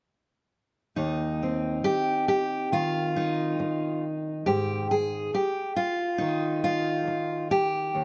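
A fingerpicked steel-string acoustic guitar with fresh strings, an up-front auditorium sound and audible finger squeak plays alone from 1.0 to 8.0 seconds in this short, hopeful and peaceful folk excerpt in Eb major at a slow 69 BPM in straight 4/4, ranging from Eb2 to Ab4 with chords moving from Eb5 to Ab5 at 4.5 seconds, set in light reverb with lossy compression artefacts.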